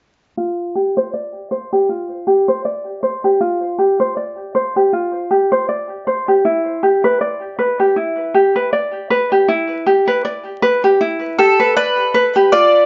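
A lightly swung 4/4 pulse at 79 BPM carries this pastoral, hopeful folktronica excerpt in G mixolydian, where a light, fingerpicked ukulele sits up front with arpeggios, treated with a low-pass filter sweep and digital delay, moving from G7sus4 to Em7 at 6.5 s, before a woody, warm mandolin with picked double strings enters with the melody at 11.4 s, all wrapped in a moderate studio reverb, vinyl crackle and a muted top end.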